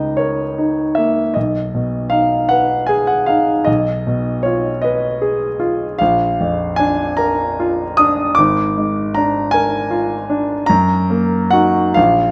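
Classical romantic nocturne for solo grand piano in Eb minor, this mournful, melancholic excerpt moves slowly at 51 BPM in a rubato 12/8, its smooth, vintage-toned piano placed up front in a moderate recital hall reverb as it spans Ab1 to Eb6 over chords drifting from Eb7/Db through Abm/Cb and Fm7b5/Cb to Bb and Bb7/Ab before settling on Ebm/Gb at 10.7 seconds.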